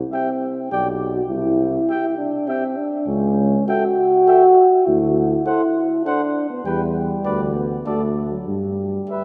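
A clear tuba opens this noble, warm classical brass quintet excerpt in three-four time, quickly joined by a mellow cornet carrying the melody with light vibrato, a soft-attacked flugelhorn on the second line, a very quiet, distant French horn, and an up-front euphonium filling out the accompaniment, all bathed in a long, wet church reverb until the harmony falls away at 8.5 seconds.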